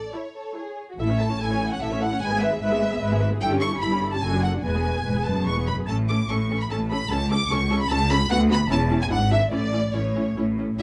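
A close, detailed recording with light reverb captures a lively, graceful classical-period movement for string orchestra in a quick, rubato 3/4, heard as a short excerpt cut from a longer piece. A focused, rich first violin section carries the melody while a more distant, expressive second violin section adds a second line, and an even, smooth viola section fills in the accompaniment from 0.1 s. Underneath, a cello section and a woody double bass section share the bass, all parts bowed with vibrato as the harmony moves through chords such as E/G#, D/F# and E7/G# before settling on A at 9.5 s.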